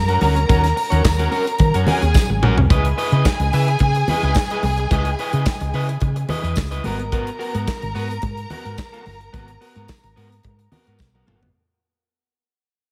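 Sultry and danceable, this 109 BPM disco cut in G# minor has a modern studio drum kit with a punchy kick, handclaps and a pumping room sound, alongside a dark, round fingered electric bass, a slightly broken-up electric guitar with spring reverb, a lush, distant bowed string section with vibrato and portamento, ringing soft-handed congas and a jingly tambourine in the background, moving from D#m7 to C#m9 and G#m9 as drum fills at 2.1 and 11.0 seconds frame a fade-out that begins at 2.7 seconds.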